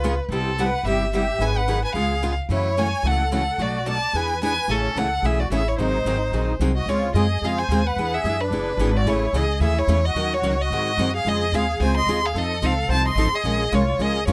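Close, detailed microphones and very little reverb make this short cut from a longer piece of jazz manouche feel intimate and immediate. The tune swings lively and charming at 219 BPM in 4/4, settling into Db major at 6.9 s, where a second section begins after an opening passage that moves through chords such as Cmaj7, F#m7 and Amaj7. Up front, a single bowed violin carries the melody with vibrato, portamento and a soft attack, sounding warm and expressive. Beneath it, a reedy musette accordion with a shimmering tuning plays a second line, while a picked steel-string acoustic guitar supplies the accompaniment. A woody, dark pizzicato upright bass with gut strings sits up front with a thumpy tone, and the four players continue together for the full 14.3 s.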